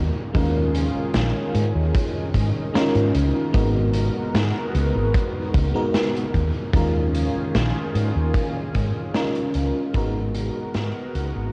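A dark, growly fretless electric bass opens this woozy, nostalgic vaporwave fragment, joined within a second by a dreamy FM electric piano with subtle chorus and tape echo, a thick, detuned sawtooth pad with chorus and phaser, and a gritty, saturated kick and garage kit of hi-hat and snare ringing in a bright stone room. The harmony sways between D#9sus4 and G#m9 chords. Light reverb and worn cassette tape with warbly pitch drift give the recording a faded haze before it fades out from 7.8 seconds.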